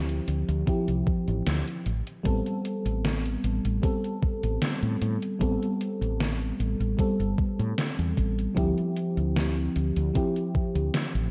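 Melancholic and nostalgic, this vaporwave fragment drifts at 76 BPM in A minor, with a mellow FM electric piano in lush chorus and analog delay sitting up front over a woody, round fretless bass warmed by tube saturation, as the harmony moves from Dm11 to Am9 and back. A gated 80s drum machine adds overdriven hi-hat and a gated-reverb snare, joined at 0.7 s by a thumpy, overdriven electronic kick. The whole is wrapped in a moderate concert hall reverb and a dark, cassette-tape production.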